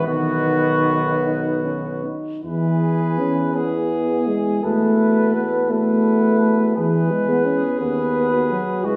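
A tender, hymn-like classical brass band passage in E major opens with all five parts at once, moving in a slow, rubato 6/8 at roughly 48-59 BPM (dotted quarters). A distant, mellow cornet carries the melody over a flugelhorn second line with light vibrato, while a dark, up-front euphonium with vibrato and a smooth-topped second euphonium in the background fill out the accompaniment above a warm, vintage-toned tuba bass. A new section begins at 2.5 s, and the whole brief fragment blooms in the reverberant air of a recital hall.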